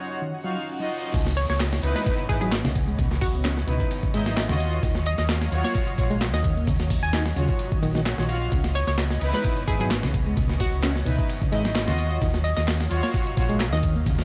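A dry, gritty hardware sound with transformer saturation frames this raw, swaggering breakbeat cut, where a reverse cymbal and downlifter sound faintly before the drop hits at 1.1 seconds and an overdriven, thumpy sampler-style break kit and a round, hollow-body fingered bass take the front, with a tape-softened house kit of claps, hats and ride layered in the background. Over a sway between minor ninth chords, a reedy electric piano riff shimmers with fast tremolo, a hollow, bouncy square pluck carries the melody through chorus, AM-radio tone and tape echo, and muted, veiled strings punctuate with con sordino stabs. Behind them a lush, detuned unison pad pumps with sidechain compression, coloured by phaser and 12-bit sampler grit.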